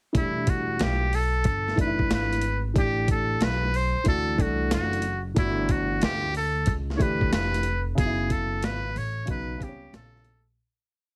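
Cool and nocturnal, this short jazz-hop piece in E dorian moves at 92 BPM in 4/4 with a 66% swing on the sixteenths. A gritty, sampler-style boom-bap kit, re-recorded in a large room, lays down a thumpy hard kick, a high-tuned backbeat snare and hi-hat, while a woody upright bass on gut strings walks beneath it with muted ghost notes, slides and chromatic approach notes. A dark, mellow concert grand adds short-sustain pushed chords in quartal voicings with grace notes, moving from Em7 through Asus2, D9 and Gsus2 to F#m7 and B. From 0.2 seconds a trumpet with a metal mute sits up front, its buzzy, breathy, whispered tone carrying an intimate, motif-based jazz melody. The whole piece has light reverb and a heavily compressed, radio-like sound, and it fades out from 8.0 seconds to its close at 10.6 seconds.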